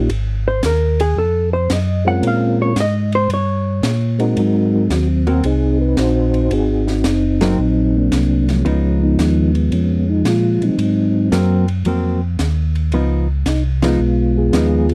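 A dark, warm, nearly dry production frames this bluesy, soulful soul jazz organ trio piece in Ab mixolydian, swinging at 112 BPM in 4/4. Up front, a soft, flute-like tonewheel organ carries the melody with clean second-harmonic percussion, chorus vibrato and slow rotary speaker, while a round, lightly overdriven organ bass turns through its own slow rotary. A compact acoustic cocktail kit with dark cymbals and a high-tuned snare keeps time on hi-hat and ride, and a clean, compressed, fingered hollow-body guitar solos until 4.4 seconds before comping over an Ab9 to Db9 vamp, with the band hitting accents at 7.3 and 13.7 seconds in this fragment of a longer performance.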